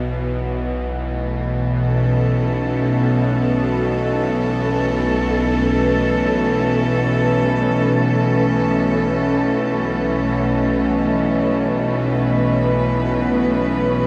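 In free time, this vast, ominous dark ambient drone excerpt rests on an A chord, with a tense, detuned sawtooth drone, string-like, noisy and bright with phaser and vibrato, sustaining low beneath a clear, intense symphonic cello section holding chords with light vibrato, both up front across the full 14.1 seconds in a dreamy mix soaked in huge reverb.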